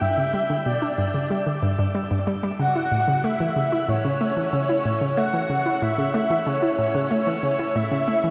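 Cosmic and expansive, this short ambient fragment, cut from a longer piece, moves in a straight 4/4 feel across its 8.3 seconds. A breathy, flute-like synth lead carries the melody up front in a high register, its soft attack and sustained tones colored by vibrato, an ensemble chorus, a cassette-tape character and analog delay. Beneath it, a hollow, bouncy square pluck plays a riff from low to middle range, its detuned tone given a fast attack and short decay, then treated with chorus, phaser and analog delay. Both parts sound for the whole span, while the harmony moves from a G5 chord to A at 2.6 seconds. A long, shimmering reverb tail washes over the dark, warm production, giving the sound a vast space.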